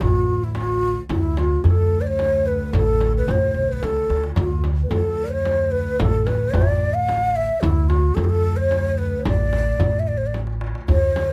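Passionate and warm, this Arabic maqam ensemble excerpt in 3/4 puts a breathy, mellow ney with vibrato up front on the melody, joined by a very quiet clay ocarina playing a straight-toned second line, over a woody pizzicato upright bass, a dark, veiled bowed double bass holding a muted drone, a deep darbuka set distant in the background and a frame drum struck with hard hands, with drum fills at 3.8 s and 10.3 s, all caught by close, detailed microphones in light reverb.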